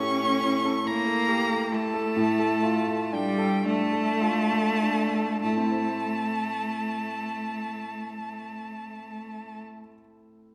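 In a 6/8 at a slow 32 to 48 dotted-quarter beats per minute, this classical piano trio movement moves with free rubato, easing back in pace through its opening 5.4 seconds. Cut from a longer piece in A minor and tuned to A4 = 441 Hz, it carries a solemn, yearning romantic mood over harmony that passes from A7 to Dm/A before settling on Am. A single bowed violin sings the melody high in its range with expressive vibrato, portamento and a smooth top, while one close-miked cello shapes a second line below with a soft attack and its own gliding, vibrato-rich phrasing. Both strings stop at 9.6 seconds, and the concert grand piano's accompaniment, rich in deep bass, rings on alone to 10.5 seconds. All three instruments sit up front, bathed in the wet reverb of a recital hall that lingers for about 1.5 seconds.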